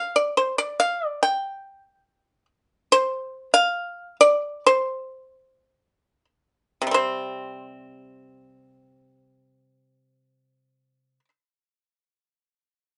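This is a rough home demo recording with light reverb and a dulled top end that stops at 11.0 kHz. It is a short cut from a longer piece of Chinese traditional music for solo plucked strings. A single acoustic pipa plays alone and up front from the start until 11.3 seconds, ranging from C3 to G5. Its tone is bright and percussive, with the dry attack of fingerpicks on the strings. The rubato phrasing in 2/4 gives the playing an elegant, serene character, and it slows down between 2.9 and 6.9 seconds before a new section begins.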